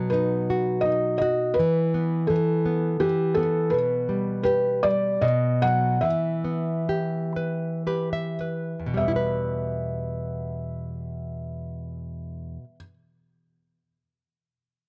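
A dreamy, gentle children's lullaby in a rubato 3/4, cut from a longer piece, where a felt-muted upright piano carries the melody with a dark, intimate tone and audible action noise over fingerpicked classical nylon-string guitar accompaniment, both up front in a dry, close 1970s-style small-room recording that slows from 3.7 to 9.0 seconds as the guitar adds a fill at 7.4 seconds.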